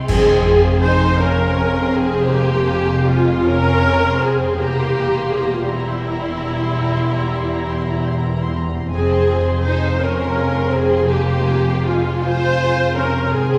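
A rich viola section sits up front with the accompaniment in this slow, melancholic and solemn romantic orchestral movement in F minor, moving at 55 BPM in a rubato 12/8 over Fm, C7/E and back to Fm. High violins carry the melody in the background with soft attack and expressive vibrato, a second violin section holds a smooth inner line, a ringing concert harp plays arpeggios, and woody double basses join an intimate cello section on the bass. Dark clash cymbals with concert bass drum and a very quiet, round timpani stroke on F2 mark an accent at 0.1 s, and the orchestra sits in a wet scoring-stage reverb, heard from further back in the room, in this passage cut from a longer piece.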